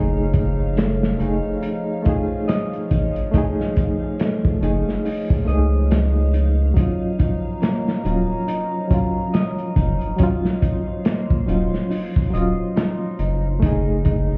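A swung sixteenth-note breakbeat enters at 0.3 s on a crunchy kit of hi-hat, punchy kick and medium-tuned snare, gritty with vintage 12-bit sampler texture and a rolled-off top, sitting up front in this smoky, hypnotic trip hop fragment cut from a longer piece. Beneath it, a round analog bass with a fast attack holds down the low end, deep and sustained from the very start. A reedy electric piano carries the accompaniment with fast tremolo and tape echo while a filter sweep moves across it throughout, and a slightly broken-up electric guitar picks compressed arpeggios through its own tape echo. A moody analog pad with a sub octave sustains chords through chorus and phaser, and a tense, string-like bowed drone with vibrato and detuned unison hovers in the background. The harmony moves from Gbm6 to Ebm7 and back, and the whole mix sounds muffled as if heard through a wall, with club reverb and a layer of vinyl crackle.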